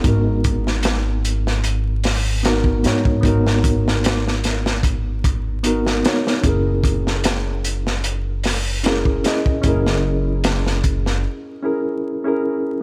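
A crunchy, saturated breakbeat kit of tight kick, medium-tuned snare and hi-hat sits up front with a gritty, rolled-off top, setting a hypnotic, brooding trip hop groove with a light swing. A woody, thumpy pizzicato upright bass with tube saturation plays beside it, while a reedy, mellow electric piano, colored by harmonic tremolo, 12-bit sampler grit, a low-pass filter and tape echo, moves from G#m7 to F#7. Vinyl crackle and small room ambience hang over this short cut from a longer piece, and at 11.2 s the drums and bass stop, leaving the electric piano to carry the break until 12.8 s.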